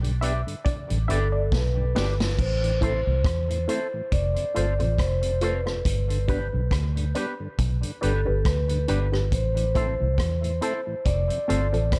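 A gently swung 16th-note groove at 69 BPM in 4/4 carries this meditative, laid-back roots reggae passage in A minor. A vintage drum kit with a punchy kick and a rolled-off top sits up front beside a dark, foam-muted fingered electric bass. A deep, detuned dub chord stab with a phaser takes a brief featured turn in the opening 2.4 seconds, capped by a drum fill. From 1.1 seconds a metallic, ringing vibraphone played with medium mallets carries the melody through tape echo. A twangy, clean envelope-filtered electric guitar with subtle chorus fills in alongside a mellow tonewheel organ that sits in the background through a stopped rotary speaker, all in a light studio reverb, as the chords move from G to Am, F and G.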